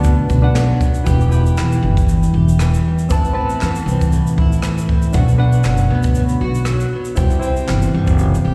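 A lightly swung 4/4 groove from an airy, polished brush kit with a boomy kick, rim click, shaker and snare carries this reflective, wistful acoustic pop clip, heard live through a venue's PA in a recital hall, where a double-tracked, full-bodied fingerpicked jumbo acoustic guitar and a woody, thumpy pizzicato upright bass sit up front, a reedy electric piano with fast tremolo and slapback echo plays through its built-in speakers, and hollow group handclaps with slapback echo linger in the background from 0.6 to 7.8 seconds over chords moving from Bm through Em, Amadd9 and back to Bm before landing on C.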